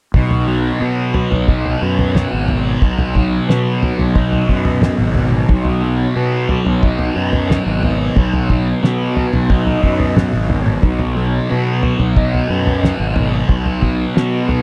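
Psychedelic rock at 90 BPM in B major, this short excerpt, cut from a longer piece, feels kaleidoscopic and hypnotic. A thick, double-tracked fuzz guitar riff with distortion and phaser sits up front over round, overdriven fingered bass, while a cloth-damped drum kit of kick, snare and toms thuds along with a fat snare, tight kick and rolled-off top. The sound is dry and close, like a 1970s studio recording with little reverb.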